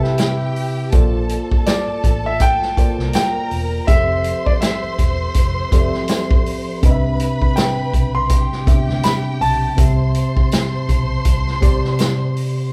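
A band playing live in one room fills a large studio with moderate reverb in this lush, romantic 1970s-style soul fragment in C major, moving smoothly at 81 BPM in 4/4 with a swung sixteenth-note feel over Am7, Bbmaj9, Fmaj9 and Cmaj9. A warm concert grand piano carries the melody high in its register, joined by a veiled, con sordino string section bowing a soft second line with vibrato, while a mellow tine electric piano supplies clean accompaniment. An up-front, punchy vintage drum kit and a faint, jingly tambourine drive the groove. A bright, spring-reverbed clean guitar riff sounds only until 0.9 s, when a dark, round, foam-muted fingered bass enters.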